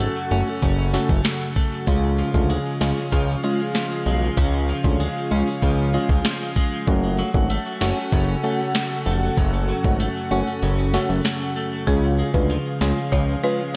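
Dancehall with a hypnotic, bouncy mood, cut from a longer piece, built on an up-front afro-pop drum kit of knocking kick, sharp snare, metallic hats and finger snaps, plus a fat, detuned sawtooth bass, while a clean, compressed twelve-string electric guitar plays arpeggios and a hollow, dark organ stab adds percussive accompaniment. An airy, breathy pad with a vintage warble holds sustained chords, and the kick drops out at 10.6 seconds before a woody, buzzing marimba carries a brief melody from 11.9 seconds. The dreamy mix is soaked in plate reverb, with chorus on the pad and organ and delay on the guitar and marimba.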